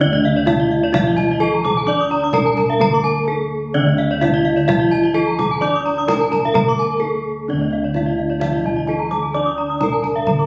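Captured on a phone in a reverberant recital hall with added club reverb and compression, this hypnotic, shimmering Balinese gamelan passage in D pelog at 129 BPM in a straight 4/4 sets an up-front, bright horn-mallet bronze metallophone melody over a full, dry, wooden-mallet metallophone accompaniment, a ringing horn-mallet metallophone arpeggio line and a vintage, band-limited one carrying slapback echo, all with the beating paired tuning of the ensemble, while round, dark bossed gongs hold the bass and a tight, close kendang drives the rhythm, with brief breaks at 3.0 and 6.8 seconds in this piece cut from a longer work.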